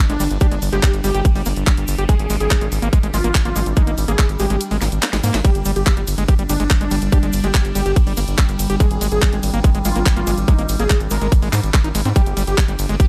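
Psychedelic trance in straight 4/4, this intense, hypnotic passage is cut from a longer piece and runs on a tight, up-front electronic kick that drops out from 4.6 to 5.4 seconds while a drum fill plays from 4.8 to 5.4 seconds. Underneath, a round analog bass sits deep and dark in the low register, while a layered garage drum kit adds handclaps, hi-hat, ride cymbal and a cracking snare, with a very quiet, grainy cabasa in a small room. A screaming acid line carries the riff, squelchy and aggressive with a resonant filter sweep, distortion, chorus, delay and sidechain pumping. Above it, a thick, detuned unison lead sings the melody with vibrato, phaser, delay and pumping. In the background, an evolving wavetable pad morphs through sustained chords with slow attack, phaser and its own reverb, as the harmony shifts between G and A-flat based chords over an otherwise dry mix.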